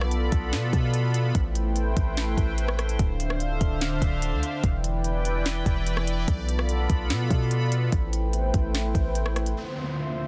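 A bright, evolving sawtooth pad with chorus and sidechain pumping sustains hazy chords from Bm7b5 to Am7 and Dm7, over a deep, boomy 808-style sine bass and a smooth, overdriven R&B drum kit with a soft kick, sharp snare and rim click, all opening this ethereal A minor cloud-rap cut at 146 BPM in a half-time feel, until the drums stop at 9.6 s and an electronic downlifter closes the dry, densely limited mix.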